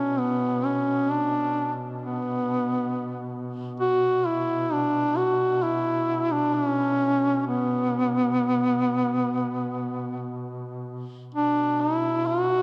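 Caucasian folk lament in B minor, solemn and mournful, moving in a free rubato around 59-68 BPM. A mellow, present duduk carries the melody up front between B3 and F#4 with folk vibrato, while a second duduk holds a low B2 drone beneath it, softer and smooth-topped. Both sit in a long, wet cathedral reverb with a dark production, and the piece shifts into a new section at 11.3 seconds before this fragment of a longer piece ends at 12.6 seconds.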